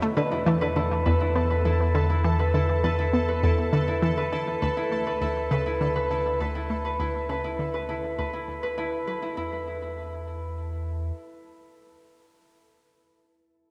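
Ambient music at 101 BPM in a straight 4/4, with a mysterious, expansive mood, heard as a cut from a longer piece. A fingerpicked Celtic harp plays ringing, acoustic arpeggios with delay throughout the 12 seconds, sitting up front beside an analog pluck riff whose detuned sawtooth and pulse-wave tone, touched by a noise layer, chorus, delay and cassette tape, sounds bright and snappy. Underneath, a deep sine sub bass holds sustained, mellow low notes until 11.1 s. A pulsing gated texture adds a tempo-synced, detuned triangle shimmer with slow attack, chorus and its own built-in reverb until 9.4 s. The harmony moves from E5 to D5 at 4.6 s before the chords drop away at 9.4 s, where the pluck trails off by 9.6 s while the harp and bass carry on. Everything sits in a cavernous cathedral reverb with a long 5.1-second tail, tinged by cassette tape character.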